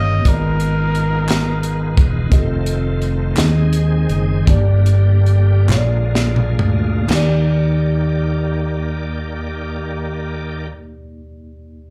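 Heard live through the venue's PA with a light club reverb, this soulful, uplifting slow gospel fragment in 6/8 opens with a short warm trumpet phrase that ends at 2.0 seconds, while mellow tine electric piano, a bright, shouting tonewheel organ on slow rotary speaker and an up-front fingered electric bass carry the harmony, a crisp, polished fusion drum kit with dark cymbals and very quiet, hollow group handclaps fill out the rhythm, and the band slows down from 2.3 seconds as a drum fill from 5.7 seconds leads into a new section.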